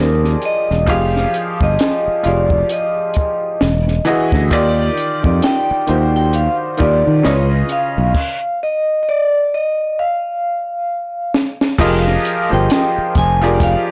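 R&B with a neo-soul lean, this introspective, sultry excerpt moves at a slow 66 BPM in 4/4 with a swung sixteenth-note feel, set in F dorian and tuned to A4 = 438 Hz. A vibraphone struck with medium hard mallets carries the melody, its metallic, ringing tone shaded by a slow motor vibrato and a plate reverb. A brilliant upright piano accompanies with a woody, slightly detuned sound, long sustain and audible action noise. A round fingered electric bass, thickened by transformer saturation, and a compact cocktail kit with a high-tuned snare, smooth rolled-off cymbals and a punchy, softly clipped kick sit up front alongside them. The harmony moves through Fm7, Emaj9, Ebmaj9 and Db9 before a stop at 8.1 s, where a drum fill enters at 10.0 s and leads into an Fm11 at 11.8 s. The whole recording sounds blown-out and overdriven in a moderate studio room.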